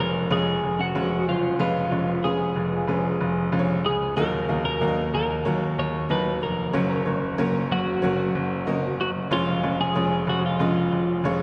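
Pop at 93 BPM with an uplifting, warm mood, cut from a longer piece, where a clean, compressed twelve-string electric guitar carries the melody up front over a bright, woody upright piano and a clear, polished baby grand piano playing the bass line, while a full-bodied fingerpicked steel-string acoustic guitar joins in the background at 4.2 s, all moving through C#/E#, D#m and F# inside the long, wet reverb of a church or concert hall.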